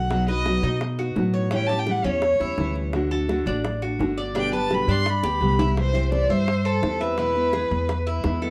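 A straight, danceable 4/4 pulse drives this short cut from a longer Cuban son and guajira piece, anchored by a thumpy, woody upright bass plucked pizzicato on gut strings and sitting up front. Tight, high-tuned bongos struck with hard hands stay in the background, and a drum fill arrives at 5.2 seconds, just before the music moves into a new section at 5.8 seconds. Over this, a single bowed violin takes an expressive solo from the start, with a soft attack, vibrato and portamento; it sits up front yet sounds distant. A bright, full-bodied nylon-string guitar fingerpicks the accompaniment with a deep classical tone, while the picked Cuban tres adds metallic arpeggios on its double strings, some doubled at the octave. The harmony moves through B, A7, D and G, then C and E, and a light reverb gives the latin groove a warm, inviting glow.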